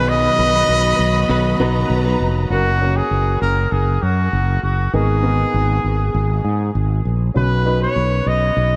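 Over a straight 4/4 pulse at 99 BPM, this hopeful pop fragment drifts through a dreamy, reverb-soaked mix where a growly, punchy fretless electric bass sits up front with a clear, distant trumpet melody carrying light vibrato, a dark, woody upright piano with analog chorus murmurs in the background, and a lush bowed violin section, a very quiet sul tasto string section and a bright, compressed clean electric guitar riff all fall away at 2.5 s as the chords move from Cb through Gb and Abmadd9 to Cbadd9.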